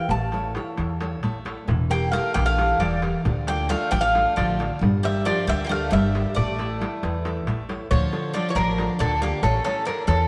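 A metallic, up-front Greek bouzouki melody and a fresh-stringed, fingerpicked classical nylon-string guitar open this tense, dramatic Greek folk excerpt in 7/8, joined at once by woody pizzicato upright bass and a crisp, band-limited metal-shell darbuka in the background, with a bright second bouzouki line entering at 1.9 seconds as the band speeds up throughout, all heard from further back in a room washed with long plate reverb.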